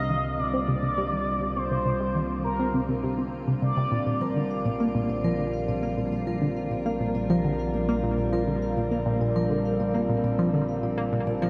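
Ambient, sequencer-driven space music with an expansive, hypnotic mood, built on a tight, driving sequenced synth riff carrying chorus, phaser and delay under a filter sweep, a morphing wavetable pad with slow-attack sustained chords up front, and a detuned analog drone bass, while a smooth, nasal synth lead sings a brief melody until 4.5 s as a metallic, ringing vibraphone takes up airy arpeggios from 4.1 s, all moving from Cm7 to Bb6 in a vast cathedral reverb.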